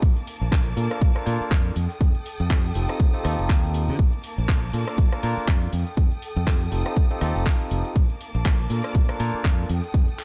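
A punchy, up-front electronic kick, a tape-warm house kit of handclaps, hi-hat and rim click with pumping hats and cymbals, a bright fingered electric bass and a lush, bowed violin section holding sustained chords with sidechain pumping open this funky, feel-good filtered disco house excerpt with a swung sixteenth feel, joined at 0.5 seconds by a barky tine electric piano through a combo amp, phased and roughened with vintage 12-bit sampler grit, as the harmony alternates between Bbmaj7 and F9 in a digital ambience.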